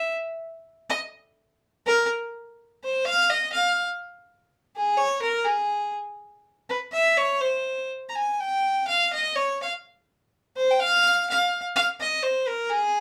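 A moderate studio ambience surrounds this short cut from a longer alpine folk piece, with a single bowed fiddle sitting up front yet carrying a slightly distant, earthy tone. Playing alone from 0.0 to 13.0 seconds, the fiddle sounds clear, with light vibrato, across a festive, jolly tune in F minor at 124 BPM in a straight 2/4. The opening idea is stated twice before a new passage begins at 11.8 seconds, just as the cut ends.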